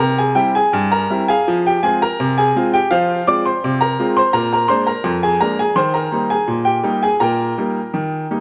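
Playful and jaunty, this short cut from a longer ragtime piece in Eb major sets a clear, woody upright piano up front alone at 83 BPM in a straight 2/4. Its smooth, vintage tone carries an analog delay through a C7, Fm, Bb7, Eb to Eb/Bb progression, all bathed in wet spring reverb, a small room and the haze of an echo-heavy cassette-tape mix.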